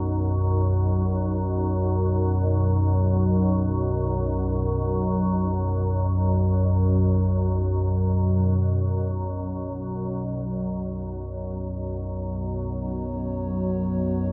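An organ-like drone sits up front from the start, holding low notes between B1 and F#2 with a calm, detuned sine tone, slow attack and long release, thickened by ensemble chorus and its own built-in reverb. This is dark ambient drone in free time, tuned to A4 = 441 Hz, with a dark, cavernous mood. The harmony rests on B5 before shifting to Bsus2 at 10.9 s, opening a second passage. At 12.2 s a dark analog pad enters much lower in the mix, sustaining moody chords from B3 to C#5. Its detuned blend of square, sawtooth and triangle waves, with a sub octave and a moving notch under chorus, adds a deep, shadowy layer until the recording is cut off at 14.3 s. A huge ambient reverb with an 8.0-second tail leaves the mix dreamy and soaked.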